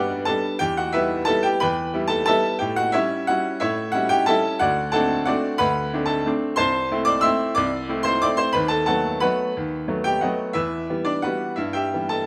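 Bittersweet and wistful, this short excerpt from a classical piano waltz in 3/4 at 180 BPM features a bright baby grand piano alone, its brilliant, open tone with short sustain set up front by close, detailed microphones in a moderate recital hall reverb, played with rubato and uneven beats through chords moving from G and Em via A7 and D7 to settle in E minor from 6.6 s, spanning C2 to E6.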